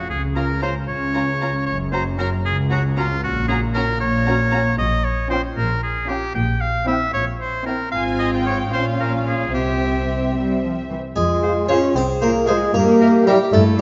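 Cinematic, whimsical film cue in 6/8 at 76 BPM, magical and quirky in mood, settling into F minor from 4.8 s with tuning at A4 = 437 Hz. A bright oboe carries a second line up front over muted, veiled string sections: violins on the melody and a second line, violas on accompaniment, and distant cellos and double basses on the bass, all bowed with vibrato in a moderate scoring-stage reverb. At 11.2 s a dry, plucked harpsichord takes the melody while a mellow clarinet and a warm bassoon add a line and accompaniment. At 11.4 s an airy flute section joins with a further line and a very quiet French horn section holds sustained chords.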